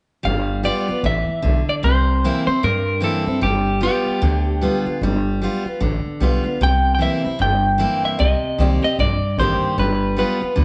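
Rollicking and retro, this short rock passage, cut from a longer piece, rides a swung eighth-note feel in four. A picked steel-string acoustic guitar carries the accompaniment with a full-bodied, fresh-stringed auditorium sound. An upright bass, plucked on gut strings, supplies a woody, thumpy low end from 0.2 seconds. The melody enters at 0.3 seconds on a picked, compressed electric guitar at the edge of break-up, its slightly broken-up tone washed in spring reverb. All three parts sit up front, heard as a band playing live in one moderate stone room with a rolled-off top. The harmony moves between dominant seventh chords on G and C, turns to a C minor seventh at 8.2 seconds, and comes back to G7.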